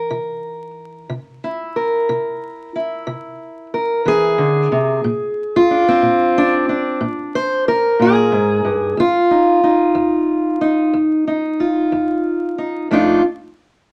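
A dark, boxy parlour steel-string acoustic guitar, fingerpicked up front with audible finger squeak, carries this rollicking, gritty acoustic country blues alone at 61 BPM in a straight 12/8, moving through C7, Bb7 and Ebsus2/F before landing on F6 near 12.9 seconds, all set in a moderate club reverb with vinyl crackle in this short cut from a longer piece.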